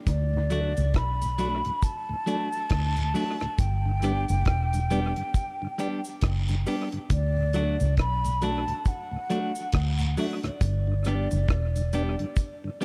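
A swung roots reggae groove, built from a dry, up-front drum kit of kick, hi-hat and rim click with analog delay, a round, foam-muted fingered electric bass and distant cabasa and guiro, drives this sunny, uplifting cut from a longer piece, as a mellow tonewheel organ on slow rotary speaker and a twangy, clean electric guitar with tape echo join within the first second beneath an airy, hollow concert flute melody with vibrato and tape echo, over chords alternating between D and G in a small, lightly reverberant room.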